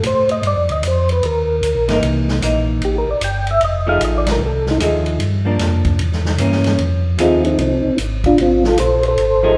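A tonewheel organ opens this soulful, bluesy soul jazz organ trio excerpt with a soft, flute-like solo line. Its percussive second-harmonic attack and chorus vibrato sit up front through a slow rotary speaker. Beneath it, a second tonewheel organ carries the bass in a round, dark register, lightly overdriven with audible key click and its own slow rotary swirl. An acoustic jazz kit of hi-hat, ride, snare and a boomy kick swings the 4/4 pulse with dark cymbals and a natural small-room character. A clean, picked hollow-body electric guitar joins at 1.9 seconds with dusky accompaniment over changes that move from Gm7 through C7#9 and F7#9 to an Edim7. The organ melody pauses briefly and returns at 7.2 seconds, and a moderate large-studio reverb places the whole group a little further back in the room.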